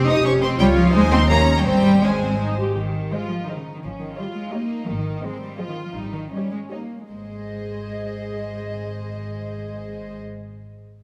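The cello section stands out most, sitting up front with a soft attack and light vibrato as it carries the bass line alongside the double basses, whose bowed sul tasto tone floats beneath it. This is a quick, dramatic and urgent classical-period movement for string orchestra in 3/4 and Ab major, moving at 150-173 BPM with a straight feel, cut from a longer piece. Violas supply an intimate, close accompaniment, while one violin section carries the melody in a narrow upper range and a second violin section adds a pure, clear line ranging from C4 to Eb6. The harmony circles around Ab and Eb7, and the tempo slows from 4.4 to 7.1 seconds before the music settles back on Ab as a new section begins. A scoring-stage reverb lingers for 2.1 seconds, wrapping the sul tasto bowing of the ensemble in a wet, spacious glow.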